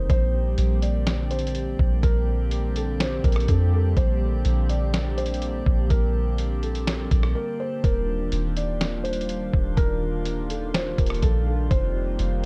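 A deep, round 808-style bass sits up front in this blissful, floating cloud-rap excerpt at 124 BPM in a half-time feel in Bb major, beside a thumpy, muffled, pitched-down sampler-style drum kit of kick, medium-tuned snare, rim click and hi-hat that enters at 0.1 seconds, with a short break arriving at 7.4 seconds. Above them, a felt-muted upright piano with audible action noise plays an intimate, vintage melody through delay, while a smooth sawtooth-and-triangle analog pad with chorus and sidechain pumping sustains chords moving from Bbmaj13 to Ebmaj9 at 7.8 seconds and F9sus4. A glassy texture of drifting overtones, with chorus and built-in reverb, hovers calmly in the background of the dark, digitally ambient mix.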